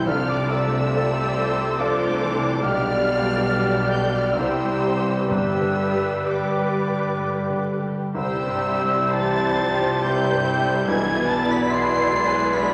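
A lush, passionate classical excerpt in 3/4 with a rubato feel around 59-73 BPM in C major opens at once on a clear grand piano melody doubled by a high, expressive violin section with vibrato and portamento, while a second violin section, a soft-attacked oboe, rich, smooth violas, cellos and a distant double bass section fill in the harmony and low end. From 0.1 s a present clarinet, an airy flute section and a mellow, close-miked bassoon add inner lines. A dark, very quiet French horn section holds chords until 11.2 s, and dry timpani strokes sound in two brief spots, all within a scoring-stage reverb tinged with vinyl crackle.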